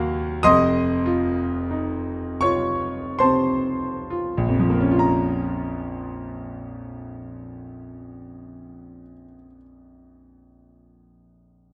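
Heard up close with little reverb, this short fragment of a romantic classical nocturne features a solo grand piano whose clear, smooth, vintage tone has a short sustain and sits up front. The mournful, wistful music moves in a slow, rubato 3/4 between 31 and 51 BPM in Bb minor, spanning F1 to F6. An F7 chord at 0.5 seconds leads through a slowing first phrase to a Bb minor chord at 5.0 seconds, where a new section begins.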